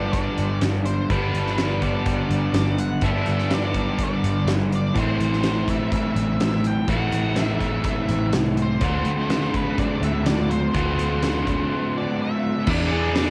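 A double-tracked, overdriven electric guitar sits up front with a subtle chorus and a cassette-tape haze, driving a riff through G, A minor, D7 and E7 in this hazy, dreamy shoegaze and dream-pop rock excerpt. Above it, a dark octave-fuzz lead guitar carries the melody, smeared with distortion, tape echo and cassette grit. Beneath both, a round, foam-muted picked bass plays from the start, and a huge arena drum kit, with its punchy kick and fat snare, enters at 0.1 seconds; the whole home recording has a light reverb.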